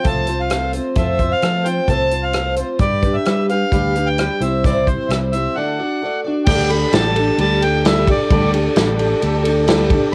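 Lightly reverberant with the character of a home cassette recording, this nostalgic, hopeful folk rock and heartland rock fragment moves at 131 BPM in a straight 4/4, with a reedy accordion melody and a shimmering, octave-doubled twelve-string acoustic guitar up front over a natural country drum kit with bright cymbals and a punchy kick and a round fingered electric bass, reaching a break at 5.6 seconds before a clear, lightly overdriven tonewheel organ with fast rotary speaker and key click enters in the background at 6.5 seconds on a Dsus4 chord.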